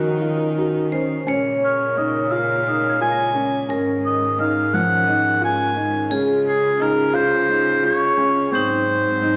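In a straight 7/8, this hopeful, playful chamber piece sets dark, intimate arpeggios from a felt-muted upright piano with audible action noise beside a bright, metallic second line on hard-mallet vibraphone and a sul tasto cello bass, over distant, floating string chords, before an up-front, vintage-toned oboe takes the melody at 1.6 s and a delicate, bell-like celesta adds background texture through 4.4 s, within a wet concert-hall reverb.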